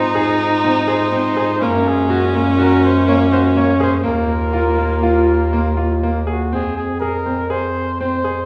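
A close-miked flugelhorn with light vibrato carries the melody in this urgent, hypnotic fragment of contemporary chamber music, moving at 123 BPM in 5/4 with a straight feel in F phrygian. Up front, a single bowed viola adds a biting, nasal, earthy second line until 6.2 s, while a warm bass clarinet anchors the bass in classical style and a clear concert grand piano with deep bass plays arpeggios. A mellow, soft-attacked woodwind section holds sustained chords in the background until 6.5 s, where the harmony moves to Fm, and the ensemble sits in a wet recital hall heard from further back in the room.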